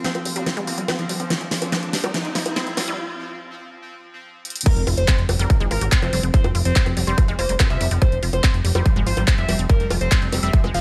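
Psychedelic trance at 143 BPM in 4/4, tuned to A4 = 436 Hz on an F5 chord, this hypnotic, driving clip opens with a build-up where a fat analog bass, a bright, warbling unison pluck riff, a pulsing gated texture of sustained chords, a huge-snared dance kit with bongos, handclaps, hi-hat and crash, and an airy, breathy pad gather under a filter sweep and a background riser and impact, while a metallic wobble bass plays a second line. After a break from 3.0 to 4.7 seconds, the drop lands with a punchy, up-front electronic kick and a gritty, screaming overdriven synth lead carrying the melody through phaser, distortion and digital delay. Sidechain pumping drives the pluck, lead, wobble bass, gated texture and pad, and a digital ambience surrounds the whole mix.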